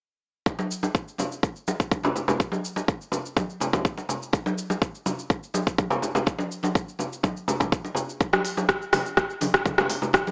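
Light reverb and a digital ambience sit around a small-speaker sound in this hypnotic, driving house excerpt, cut from a longer piece. From 0.5 s, a punchy, layered electronic kick drum and an up-front, tape-warm afro-pop drum kit of crisp hi-hats, cabasa, rim click and toms play in straight 4/4. Ringing, medium-tuned acoustic congas in a small room enter alongside them at the same moment and carry on with the kit until 10.3 s.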